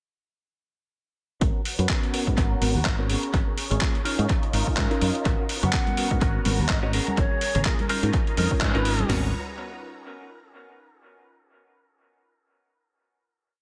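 Funky and nostalgic, this filtered disco house piece at 125 BPM in G# dorian runs a swung groove from 1.4 seconds under a long filter sweep, as a punchy, overdriven analog drum machine drives four-on-the-floor kicks and a gritty sampler-style kit adds claps and hats, a round, pumping fingered bass plays a syncopated line, a swirling phased string machine holds bright sustained chords, a clean picked electric guitar and a worn, slightly out-of-tune tine electric piano chop close-voiced chords through dub echo in the background, tambourine and congas join at 5.3 seconds, and a breathy concert flute adds short phrases before the band settles on a rootless G#m11 final chord at 9.1 seconds.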